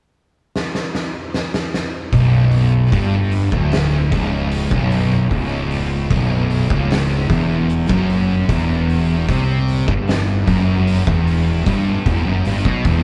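Brooding and heavy, this stoner and doom metal excerpt opens with a drum fill on an oversized low-tuned kit, its fat snare, boomy kick and hi-hat sounding saturated, gritty and up front in a bright stone room, before two dark, picked, thick fuzz guitars and a round, overdriven fingered electric bass crash in at 2.1 seconds with a distorted riff moving from Bm to E5, all captured live in one room with wet reverb and the grain of cassette tape.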